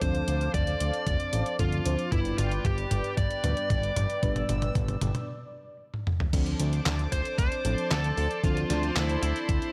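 Moody, driving synthwave in D minor at 114 BPM opens with every part sounding at once: a thumpy electronic kick, a detuned 8-bit drum machine with a medium-tuned snare, handclaps, hi-hat, toms and crash, and a fat, thick sawtooth bass pumping against the kick. Above them, a brassy analog pad holds bold, warbling chords high in the register under a filter sweep that runs until 6.3 seconds, while a mellow FM electric piano adds round, softly decaying stabs with a noise layer. A dark, overdriven lead guitar sits up front with the melody, its picked tone roughened by vintage 12-bit sampler grit and trailed by delay. Drum fills run through much of the opening, and a break arrives at 5.3 seconds before the harmony, having moved from Dm7 to G, returns to Dm7 as a new section begins at 6.3 seconds. The drums carry a tape-warm, sampler-style character set in a large room, with light reverb and digital ambience around the mix, and the passage is cut from a longer piece.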